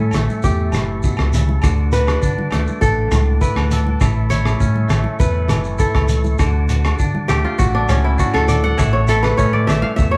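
Danceable and warm, this highlife guitar band excerpt moves at 101 BPM in 4/4 in D major, built on a simple rocking between A and D, with an up-front, crisp kora taking the lead in ringing fingerpicked arpeggios throughout. Beneath it, a round, dark fingered electric bass and a muffled, thuddy cloth-damped drum kit with tight kick, hi-hat and rim click anchor the groove, while a twangy, compressed clean electric guitar plays accompaniment and a lightly overdriven tonewheel organ holds sustained chords through a slow rotary speaker in the background. Bright, thin-skinned congas, grainy shekere and ringing agogo bells add percussion, all captured as a band playing live in one room with moderate studio ambience.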